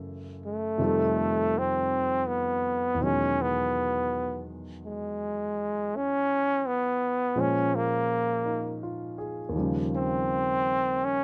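Jazz ballad at a slow 55 BPM in swung 4/4, with a late-night, intimate mood, taken from a longer piece. A warm grand piano sits up front in accompaniment, moving through rich chords such as Gbm7, F9, Emaj9 and Bbm9. From 0.5 s a brilliant, punchy trombone takes a forceful jazz solo with vibrato and scooped notes, captured by close, detailed microphones in a dry, present sound.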